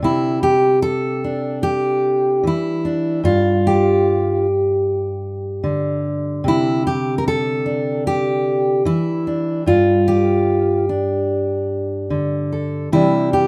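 Folk for solo fingerpicked steel-string acoustic guitar at 74 BPM in a straight 4/4, intimate and wistful in mood, a 13.5-second excerpt cut from a longer piece. The full-bodied jumbo guitar sits up front with light reverb, its finger squeak audible as it ranges from G2 to Bb4. It alternates between Cadd9 and G5 throughout, returning to Cadd9 at 12.9 seconds.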